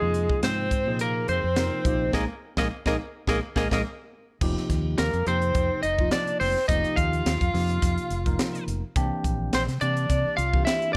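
Electric jazz fusion in F dorian at 106 BPM with a slick, intense swung-sixteenth feel, cut from a longer piece, where a twangy, slightly broken-up lead guitar carries the melody up front over a forceful tenor saxophone second line with vibrato and slapback echo, a clean tine electric piano comping through a phaser, a round, punchy fingered bass that stops at 10.6 seconds, and a crisp, polished acoustic drum kit with a high-tuned snare and dark cymbals, the whole band hitting an accent from 2.1 to 4.4 seconds in a dry mix as the chords move from Fm7 and Bb7sus4 to Fsus2 and C7.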